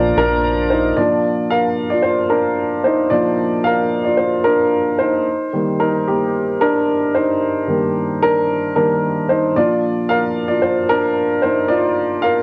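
A straight 4/4 pop pulse opens this anthemic clip with a woody, up-front upright piano joined by a punchy analog bass pluck, which ends at 0.9 s, and a bright, lightly overdriven tonewheel organ chord turning through a slow rotary speaker, which ends at 1.0 s; from there the piano plays alone with long sustain, moving through one chord change and back, bathed in wet spring reverb and small-room ambience on a homemade cassette recording.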